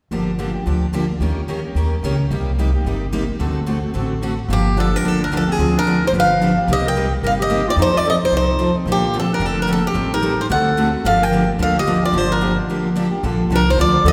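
A wet, church-like hall reverb surrounds this fragment of fast acoustic string swing in the jazz manouche style, moving at 220 BPM in G minor with a virtuosic, swinging feel. Two picked steel-string acoustic guitars carry the accompaniment from the start: one full-bodied with the warmth of a dreadnought, the other quieter and bright with audible finger squeak. Beneath them, a woody, thumpy pizzicato upright bass on gut strings sits up front. At 4.5 seconds a boxy swing-style acoustic guitar enters up front with the melody, joined by a raspy, growling clarinet playing a second line with light vibrato and scooped notes. The harmony moves through jazz changes such as Gm7, Cm7, D7 and Bbmaj7, and a short break at 12.7 seconds leads into a closing Bbmaj7.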